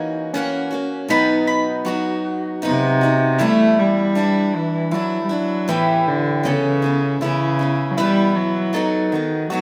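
A reedy, gut-string cello carries the melody up front from 2.7 s, its bowed, nasal period-style tone lending a melancholic, reflective air to this acoustic folk piece in 3/4 at 79 BPM, cut from a longer work. Before it enters, a round, double-strung mandolin takes a solo over the opening chords, then moves to a second line as the music settles into E dorian at 3.4 s. Beneath them, a bright, picked steel-string guitar supplies the accompaniment while a slightly broken-up, lo-fi electric guitar plays arpeggios through harmonic tremolo, all in a moderate studio reverb.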